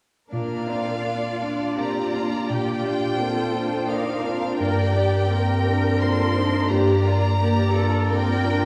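Cinematic, emotional film score for orchestra, hopeful and tender, moving in a rubato 3/4 at around 86 BPM in Bb major, cut from a longer piece. A chamber violin section carries the melody high in its range, its bowed tone rich, close and expressive with vibrato, while a symphonic violin section sings a second line beneath it with a focused, lush sound. Viola and cello sections fill out the accompaniment and bass with smooth, even bowing, and a grand piano sits up front in the mix, polished and present with long sustain. All parts play together from 0.3 to 8.7 seconds, shifting from Bb to G minor at 4.6 seconds. A wet recital hall reverb places the ensemble further back in the room, behind the prominent piano.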